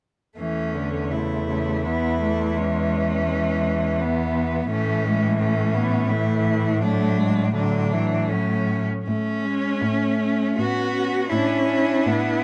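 A clear, smooth bowed cello carries the melody with vibrato over another even-toned cello holding an up-front bass line, while two rich cellos fill the middle, one focused on a second line and one supplying accompaniment with soft attacks and expressive portamento, in this serene, lyrical classical excerpt for cello ensemble in A major and 3/4, moving with rubato at 75-87 BPM in a dry, closely miked sound and shifting to a new section at 9.1 s.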